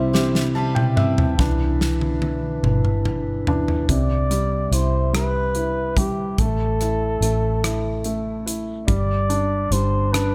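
Tender and heartfelt, this short cut from a longer six-eight pop ballad in C major moves at a slow 48 BPM in dotted quarters. A breathy flugelhorn carries the melody throughout, its scooped notes and light vibrato lending a vintage, jazz-tinged voice, softened by a touch of digital delay. Beside it, a felt-muted upright piano sits up front with audible action noise and an intimate, thin-felt softness, playing fills from 0.1 seconds and taking a solo between 1.4 and 3.9 seconds. A flute-like tonewheel organ holds sustained chords through a slow rotary speaker until 3.9 seconds, while a picked dreadnought acoustic guitar adds brief background arpeggios at the very start. Underneath, a dark, foam-muted fingered electric bass stays round and low, and a polished studio drum kit with a punchy kick, medium-tuned snare, rim clicks and toms plays fills across the opening sections. The harmony rests on Cmaj7 before moving to A5 and G5, all set in light reverb and small room ambience.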